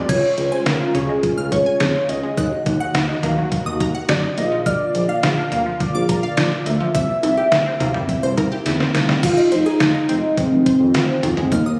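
Driving and melancholic, this synth-pop excerpt moves at 105 BPM in a straight 4/4. A velvety, detuned sawtooth lead carries the melody through chorus, phaser and tape echo. Beneath it, a squelchy, wave-folded blip pluck spins bright arpeggios, an organ-like ensemble string pad holds vintage chords in the background, and a mellow synth bass sustains with vibrato. A thumpy, up-front 8-bit drum machine with cowbell and toms drives the groove, and a drum fill at 8.7 seconds leads into a shift to F minor 7 at 9.2 seconds. The phone-captured room sound wraps everything in a lush hall reverb.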